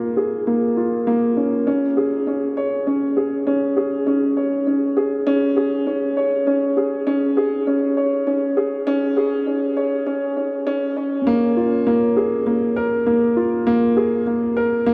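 A dark, woody upright piano sits up front and carries this tender, luminous electronica fragment alone, its mellow tone spanning Bb3 to Db5. The recording is bathed in a huge, wet ambient reverb with a 6.9-second tail and shaped by a high-pass filter. A filter sweep drives a build-up through the first 11.3 seconds before the drop arrives and runs to the cut at 14.9 seconds.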